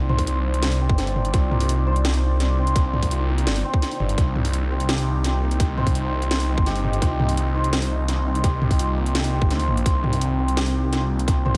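Half-time drum and bass with a spacious, cinematic mood, built on a single Cmadd9 chord and cut from a longer piece. A deep, moody pad sits in the background with chorus, reverb, 12-bit sampler grit and sidechain pumping, while a shimmering, ringing santur plays arpeggios through tape echo and a very quiet pulsing gated texture hovers above a swirling, thick phased saw bass that sits up front. From 0.1 s an overdriven kit adds a cracking snare, bright hats and toms with tape echo, joined at 0.2 s by a tight, overdriven electronic kick, all in a dry but echo-heavy mix.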